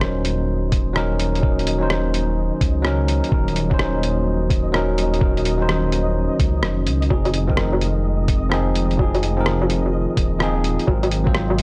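A swung 127 BPM future garage groove in 4/4 opens this wistful, rainy excerpt, with a muffled, pitched-down sampler kit of hi-hat, rim click and woodblock carrying overdrive and 12-bit grit, joined at 0.7 s by a thumpy, compressed electronic kick. A deep, rumbling detuned saw bass sits up front beside a bell-like, clean tine electric piano with the same vintage sampler treatment and analog delay, while a warbling, nostalgic tape-like pad with chorus and reverb and a flickering granular texture arriving at 0.4 s hover in the background; piano, pad and bass all pump with the sidechain. The Eb dorian harmony moves from Ebm7 to Fm7 at 7.1 s and then to Ab13, captured in a dry hardware recording with transformer saturation.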